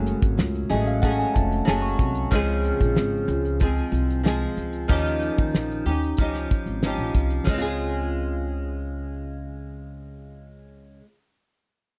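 A fingerpicked flamenco guitar, bright with fresh strings and treated with analog chorus and vibrato, sits up front in this nostalgic, sunny indie and bedroom pop excerpt in Db major at 93 BPM, joined by a cloth-damped, thuddy drum kit with a fat snare until 7.6 seconds, a woody pizzicato upright bass, and a reedy electric piano that plays a fill before dropping out at 2.3 seconds, all captured in a dry, close 1970s-style studio sound.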